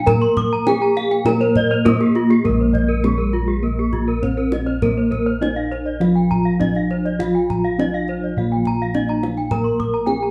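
Brilliant and ceremonial, this Balinese gamelan passage in Bb slendro moves at a straight 101 BPM in 4/4, cut from a longer piece and played live in one studio room with a moderate reverb. A close, dry and full bronze metallophone struck with a wooden mallet carries the melody. Two bright, airy metallophones played with horn mallets spin arpeggios above it, their paired tuning giving a shimmering beat. Below sit round, up-front bossed gongs on the bass line and a tight kendang struck with hard hands. A mellow, very quiet metallophone with padded disc mallets adds accompaniment, dropping out at 2.4 seconds and returning at 7.2.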